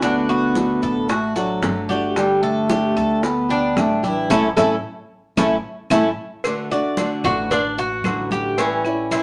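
A mellow, distant bass clarinet with light vibrato and scooped notes carries the melody until 6.0 s in this relaxed, danceable Cuban son and guajira cut from a longer piece at 112 BPM in D major, over bright, boxy fingerpicked flamenco guitar and metallic double-strung tres arpeggios up front, a thumpy pizzicato upright bass, and background percussion of round, low-tuned bongos and cowbell, thick-skinned congas, grainy vintage maracas and woody claves, set in a wet studio reverb, with a band accent and drum fill leading into the new section at 6.4 s.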